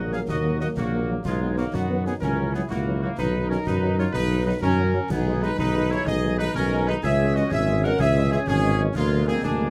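A mellow tuba sits up front with light vibrato, carrying the bass of this stern, martial military-style march for wind band in 6/8 at 125 BPM, cut from a longer piece and settling into G# minor from 5.1 s. A dark, smooth-topped trumpet section takes the melody over a mellow woodwind second line, while the French horns and close-miked trombones hold tight accompaniment and sustained chords in the background. Concert snare, bass drum and clash cymbals with bright cymbal tone sound close and dry in a moderate booth ambience.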